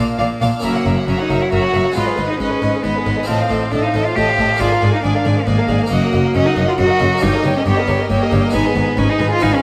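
A moderate scoring-stage reverb and a layer of vinyl crackle frame this stormy, driving fragment of a baroque-style concerto movement in triple time, cut from a longer piece. Up front, a solo cello carries the melody with a rich, focused tone, a smooth top and vibrato, while a violin section also plays the melody higher up in the background with its own vibrato. A second violin section, distant and even, adds a supporting line beneath. A close-miked, dry harpsichord with a brilliant, full sound on octave strings supplies the accompaniment alongside a warm viola section that colours its distant playing with portamento. Underneath, a clear, distant cello section and a close, expressive double bass section hold the bass through 9.5 seconds, as the harmony moves restlessly through minor chords and dominant sevenths.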